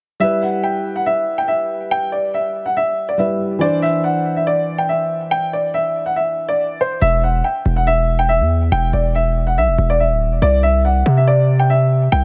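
A dark grand piano and a felt-muted upright piano open together at 0.2 s in this cold, menacing hip hop excerpt, set in a half-time feel. The grand carries the melody between C5 and G5, its tone dark and mellow with a short sustain, and a digital delay trails its notes. Beneath it, the upright supplies soft, intimate accompaniment, its muted sound carrying audible action noise, over an E minor to Cadd9 movement. At 7.0 s the upright drops out and a distorted 808-style bass takes over the low end, heavy and aggressive, with a saturated sine tone, a noise layer and a fast attack that decays, sitting up front under the grand's line as the harmony shifts from E5 to C. The mix has light reverb and a small room ambience, with a dull top end that keeps the mood shadowed, and the passage is cut from a longer piece.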